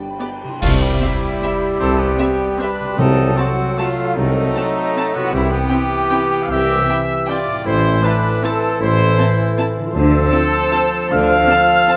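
A scoring-stage reverb of moderate size gives this fragment of an elegant, sweeping orchestral ballroom waltz a polished, spacious sound, in C major at 154 BPM in 3/4 with uneven, rubato beats. A very quiet, ringing harp opens alone with arpeggios, and at 0.2 s muted violin sections arrive, one carrying the veiled melody and another a very quiet second line, over a lush muted viola accompaniment. From 0.6 s the full orchestra joins, marked by an accent from dark, dry clash cymbals and concert bass drum. Up-front trumpet stabs with a smooth top ring out over mellow sustained horn chords and a clear tuba bass doubled by shadowy muted cellos and close double basses. An airy, distant flute, a roomy clarinet and a present cor anglais weave second lines above a soft-attack bassoon, while timpani struck with soft mallets add a round C at 3.0 s. The harmony moves from G to C, then through Cdim7, C and Am to Dm7.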